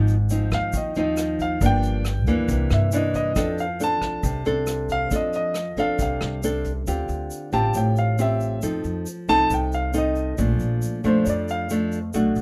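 Romantic and sophisticated, this bossa nova excerpt in F major moves at 137 BPM in a straight 4/4, with an up-front, fingerpicked nylon-string guitar carrying the chords over a woody pizzicato upright bass. A grand piano takes the melody as a natural, close-sounding solo in its upper register, while a dark, small-room brush kit with a punchy kick plays hi-hat, kick and rim clicks until 6.7 s, and a grainy, bright tube shaker sits quietly in the background throughout. Light reverb adds a gentle sense of space as the harmony moves through rich seventh and extended chords such as Gm7, C9 and Bbmaj7.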